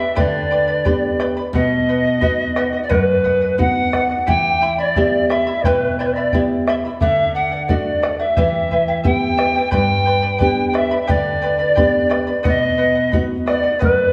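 This Andean folk ensemble piece, cut from a longer work, moves at a steady 88 BPM in a straight 4/4 with a festive, earthy mood. A polished pan flute carries the melody up front, its pure, reedy wooden tone colored by vibrato and soft attacks. A large end-blown quena, airy and bright, traces a second line in the background. Beneath them, a fingerpicked charango adds a shimmering sparkle from its doubled strings, while a full-bodied classical nylon-string guitar, also fingerpicked and up front, supports the harmony as it cycles through G, B, Em and D. A round, vintage-sounding bombo with a band-limited tone enters at 0.2 seconds, and the whole ensemble sits in a dark, warm production bathed in the lingering reverb of a recital hall.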